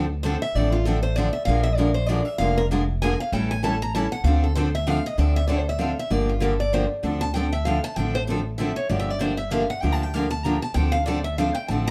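Acoustic string swing in the jazz manouche style, this excerpt moves at a brisk 194 BPM in 3/4 with a swung feel, set in D minor with a swinging, virtuosic mood. Two picked steel-string acoustic guitars carry the accompaniment from the start, both with a bright, fresh-stringed auditorium tone, one sitting further back than the other, and a steel-string guitar is heard soloing throughout. An upright bass, played pizzicato, sits up front with a woody, thumpy character, while a picked archtop guitar joins at 0.2 seconds with a second line, its bright sound marked by audible finger squeak. The harmony moves through Dm7, Bb7 and A7 before turning toward Gm7 and settling back on Dm7, across two passes of the same section. The production is dark and warm, with light reverb giving the strings a touch of space.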